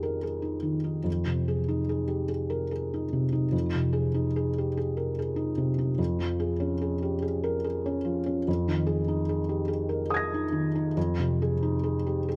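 Close, dry and intimately detailed, this short excerpt of reflective, melancholic neoclassical minimalist piano features a solo felt-muted upright piano, dark and mellow with thick felt and audible action noise up front, drifting rubato in 6/8 at 48 BPM in F minor across a range from F2 to Bb6 through Ebsus4/F, Fm7 and Db/F harmonies.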